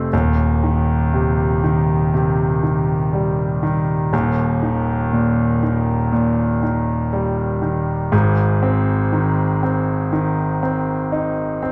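A clear concert grand piano sits up front in a large studio with moderate reverb, its tone intimate and polished, with deep bass, long sustain and audible action noise giving the sound a close, present quality. This short pop excerpt, cut from a longer piece, moves at a slow 60 BPM in 4/4 with a straight feel in Eb major, tuned to A4 = 439 Hz. The piano plays alone throughout the 11.7 seconds, ranging from Eb1 up to Eb4. The harmony begins on Cm/Eb, settles on Eb at 4.1 seconds and shifts to Ab at 8.1 seconds. The mood is tender and heartfelt, the kind of unhurried solo passage that feels like an intimate opening or reflective interlude.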